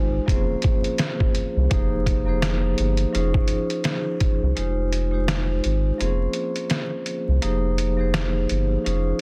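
A deep, round sub bass anchors this dark, reflective boom-bap hip-hop excerpt, with a ringing, metallic vibraphone on medium mallets carrying slow motor vibrato through cassette-tape filtering, and a muffled, pitched-down sampler-style drum kit whose thumpy kick drops out at 4.6 seconds, leaving snare and hi-hat over swung sixteenths, all in a digital ambience with vinyl crackle and a dense, heavily limited master.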